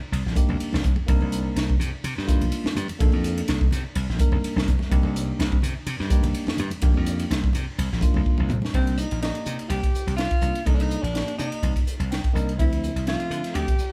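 A driving 4/4 groove at 125 BPM with a light sixteenth-note swing opens this slick electric jazz fusion excerpt in C dorian, as a punchy, up-front slap bass and a crisp fusion drum kit with a high-tuned snare and pumping small-room sound set the pace, joined by clean tine electric piano and very quiet, vintage-toned congas that play until 8.7 seconds. After a drum fill, a bright, close-miked alto saxophone takes the solo melody with vibrato at 8.7 seconds, and a dark, compressed hollow-body jazz guitar adds a second line in the background. The electric piano adds a fill just before the harmony moves from Cm9 to Dm9 at 12.6 seconds, all in a live-room sound with light reverb.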